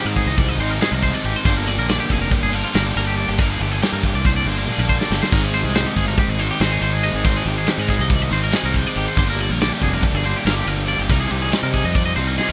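Driving in an odd 9/8 metre with a straight feel, this restless, wistful slice of math rock and midwest emo is cut from a longer piece and moves at a brisk clip. A twangy, bright electric guitar picks clean, compressed arpeggios high up, colored by tremolo. Beneath it, a double-tracked overdriven guitar carries a biting riff up front, while a round, dark fingered bass growls with fuzz and overdrive. A loose indie drum kit recorded in a small room fills in with a tight kick, a medium-tuned snare, toms and dark crash and ride cymbals, and it breaks into a fill between 4.7 and 5.3 seconds. The harmony drifts through Ab, Gm, Abmaj7 and Cm7. The mix has the rough, dry feel of a home demo, with little reverb.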